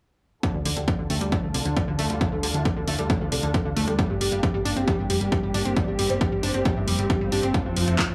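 Uplifting trance with an emotional, driving feel, this short cut from a longer piece opens at 0.4 seconds with huge, lush supersaw chords carrying the melody over a warbling, vintage analog pluck playing chorused arpeggios, both trailed by tape echo and pumping with the sidechain. A clear, close string section holds sustained chords in the background under a filter sweep, while an overdriven, up-front electronic kick and a punchy analog drum machine with handclaps and hi-hat, both re-recorded in a large room, drive the beat. A round, dark FM bass joins at 0.5 seconds, and the harmony moves from Dm to Gm before landing on F6 in light, small-room ambience.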